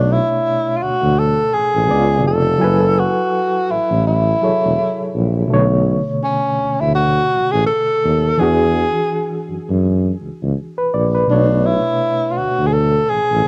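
This home recording on cassette sits in a studio reverb, with tape colouring the saxophone and electric piano. It is cut from a longer R&B and neo-soul piece in 4/4, introspective and soulful, with a gentle swing on the sixteenths. Up front, a whispered, intimate tenor saxophone carries the melody in a jazz style, with vibrato, scooped notes and a soft attack. Beneath it, a reedy, barky electric piano accompanies through its built-in speakers, lightly overdriven and pulsing with fast tremolo. A close-miked tuba holds the bass, also up front, mellow and breathy, with its own vibrato and scoops. The harmony moves from Bm9 through C#7b9 and F#m11, returns to Bm9, then passes through E9 before settling back on Bm9 at 11.3 seconds.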